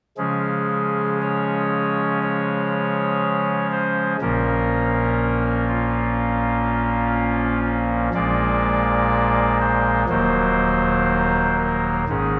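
In a steady, straight 4/4 at 61 BPM, this short chorale-style classical piece for pipe organ unfolds with a majestic, reverent calm in Db major. A soft reed voice on an oboe stop carries the whole passage alone from 0.2 to 12.4 s, its baroque voicing giving each note a gentle chiff at the onset. The organ sits up front, spanning a range from Eb1 up to D5, reaching from deep bass into the upper register. The harmony moves from Db to Bbm at 4.2 s, then to Bb7 at 8.1 s before settling on Ebm at 10.1 s. A wet church reverb with a 3.3-second decay lets every chord bloom and linger in the space, and the recording is cut from a longer piece.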